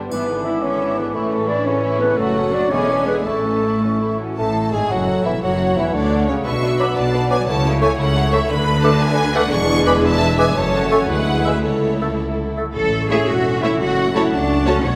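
Steeped in the wet reverb of a scoring stage, this restless, urgent excerpt from a fast romantic orchestral movement in 6/8 and A major moves at 115 BPM with rubato, as a bright, focused violin section carries the melody from 0.6 s over a lush, rich cello section and a clear double bass section, while a second violin section, an intense viola section, a distant French horn section holding sustained chords, a ringing fingerpicked harp, a mellow clarinet, an airy, hollow flute and a roomy bassoon sit in the background until the woodwinds drop out around 12.6 s, and a triangle adds a brief glint at the very start.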